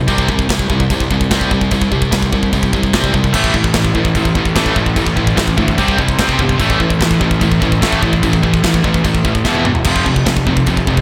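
A big arena sound with a lush hall reverb frames this dark, relentless heavy metal passage, cut from a longer piece and moving in a straight four-beat pulse. Up front, a bright, high-gain electric guitar drives the riff through power chords on C5 and A5. Beneath it, a fuzz-toned picked bass adds a growly, punchy, overdriven low end. The tight acoustic drum kit sits forward too, with a firm kick, a medium-tuned snare, toms, and airy, glistening china and crash cymbals. At 3.3 s a second, scooped high-gain guitar joins in the background, also playing a riff, and a short drum fill from 9.5 s to 9.9 s accompanies the harmony as it moves through E5 and onto F5.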